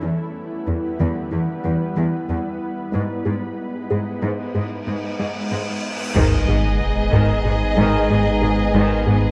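Up-front bright cellos carry the bass line of this brooding, vast hybrid orchestral and electronic film score cue in 5/4 at 93 BPM, set against an ethereal, airy pad and a squelchy, very quiet resonant blip pluck playing arpeggios over a move from Em to G#m, before a huge, dark cymbal swell and sub drop arrives at 4.5 s and lands as an impact at 6.2 s in G# minor, where a lush violin melody, a focused second violin line, intense background violas, a mellow French horn section, distant trombones, a clean sine sub bass, a round analog bass riff, a smooth double bass section and a close, dry taiko ensemble that stops at 7.4 s all join, the whole fragment bathed in concert hall reverb and the warbly pitch drift of worn cassette tape.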